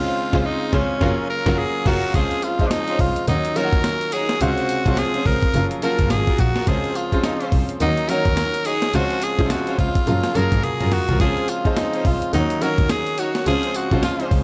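Upbeat and flirty, this short new jack swing cut at 106 BPM in Db major sets a raspy, close-miked tenor saxophone with scooped notes up front over a brilliant concert grand piano, a bowed double bass with vibrato, lush symphonic strings stabbing in the background, and a gritty, compressed breakbeat drum kit with a thumpy kick and tambourine, opening with a band accent and circling Dbmaj7, Gbmaj7 and Ebm7 in a dark, warm production with a drum fill near 10.6 seconds.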